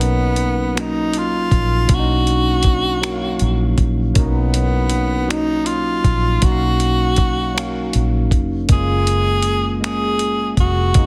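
Tender and warm, this slow six-eight R&B excerpt moves at 53 BPM in B lydian, resting on Bmaj9 before shifting to F#maj9 at 8.7 seconds. A breathy, close-miked tenor saxophone carries the melody up front with jazz-style vibrato and a slapback echo, over a barky tine electric piano with light overdrive and a phaser. Beneath them, a dark, round, foam-muted fingered bass and a gritty sampler-style kit of finger snaps, hi-hat and thumpy kick sit in light digital reverb, within a dense, heavily limited modern master.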